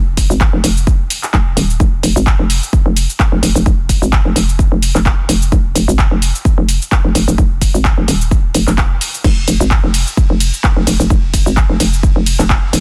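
Bass house with an aggressive, gritty mood, cut from a longer piece and swung lightly on the sixteenths. A hollow, knocking FM bass with a fast attack and bouncy decay sits up front from the start, thickened by tube saturation and pumping against the sidechain, while a punchy, layered electronic kick with studio reverb enters at 0.2 seconds. Alongside it, a house kit of bright hi-hats, handclaps, shaker, ride and crash cymbals fills out the groove in a dense, heavily limited modern master with little room sound.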